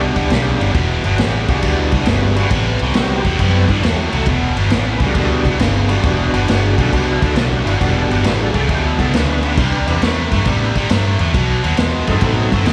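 Heavy and smoky, this blues rock and southern rock power trio clip swings in 4/4 as a gritty, overdriven tonewheel organ with key click and slow rotary speaker takes a solo of sustained chords over Em7, Am7, Cmaj7 and B7b9, while a bright, double-tracked distorted guitar riff sits up front, a round, foam-muted fingered bass anchors the low end, and a vintage drum kit with punchy kick, medium-tuned snare and dark crash cymbal enters at 0.2 seconds, all captured as a live gig heard through the venue's PA with light club reverb.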